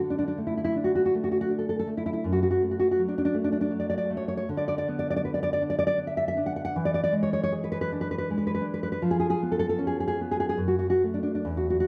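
Set in 3/4 at 79 BPM with a rubato feel, this short excerpt from a longer romantic piece for solo classical guitar sounds sunny and tender in F# minor. The nylon-string guitar plays alone for the full 11.9 seconds, sitting up front with a dark, full-bodied, deep classical tone and a thumb-plucked touch, ranging from E2 up to F#5. The harmony moves through D5, F#m, Bm/D, E7 and C#7/E# before settling back on F#m at 10.6 seconds. A moderate recital hall reverb, with a 1.6-second decay, gives the instrument a sense of space, while the production overall leans dark and warm.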